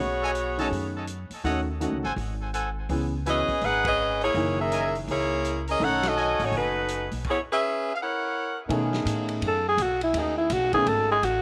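A bright saxophone section carries the melody over woody, pizzicato upright bass at the opening of this brassy, energetic big band swing excerpt at 165 BPM in B mixolydian. Tight trumpet stabs, a vintage drum kit with a punchy kick, and intimate baby grand piano accompaniment join within the first second, with tape echo on the saxophones and trumpets and band accents at 3.8 and 6.0 seconds. After a stop, a dark trombone section sustains soft-attack chords while a raspy, growling alto saxophone takes an up-front solo at 9.5 seconds, full of scooped notes and vibrato.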